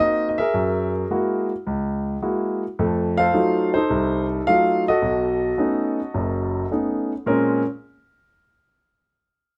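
A solo grand piano carries this short jazz cut from a longer piece, sounding intimate and close, with the soft clatter of its action audible beneath the notes. The mood is moody yet swinging, moving at 107 BPM in 4/4 with a firm swing on the eighth notes. The harmony drifts through dark, colored chords, from Cm7b5 and Gb9 to F7b9 and B9, before a new section opens on Bbm9 at 7.3 seconds. Spanning F#1 to F5, the piano sits up front with a natural tone and long sustain, and it stops at 7.6 seconds. A moderate club reverb gives the recording the feel of a small room.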